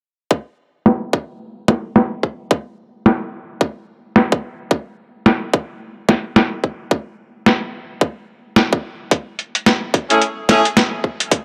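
A light reverb and the boxy character of a small room give this gritty, swaggering glitch hop fragment a close, up-front sound. A tight, layered electronic kick drum opens at 0.3 seconds, joined at 0.9 seconds by a compressed, sampler-style boom bap kit whose overdriven, medium-tuned snare and filtered hi-hats carry a swung sixteenth-note feel in 4/4. A filter sweep runs across the drums for the whole passage, and the harmony stays open until an Amaj7 chord arrives near the end. A loose, roomy pop-style horn section then lands short stabs at 10.1 seconds, pumped by sidechain and trailed by a dub echo. The result is a brief, punchy slice cut from a longer piece, built mostly on crunchy, lo-fi drums.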